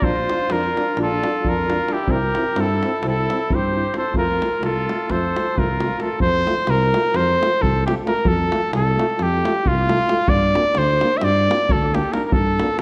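A clear flugelhorn carries the melody up front in this wild, exuberant Balkan brass band excerpt, moving in a brisk 9/8 at 263 eighth-note beats per minute in F major over chords of Bb, C, F and G minor. A warm, vintage-toned trumpet plays a second line until 6.2 seconds, while a dark euphonium with light vibrato and a trombone with vibrato sit in the background as accompaniment. A mellow, distant tuba holds the bass and a deep acoustic davul drives the percussion, all set in the wet reverb of a recital hall.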